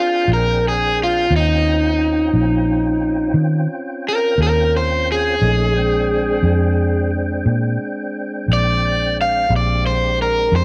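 Opening at once on an overdriven guitar solo, picked and scooped and up front, this soulful, laid-back slow blues in 12/8 at 59 BPM in Bb mixolydian rides over sustained tonewheel organ chords with key click, chorus vibrato and a slow rotary speaker, while a dark, round, punchy foam-muted fingered bass enters at 0.3 seconds beneath Bb13 and Eb13 chords in light digital ambience, cut from a longer piece.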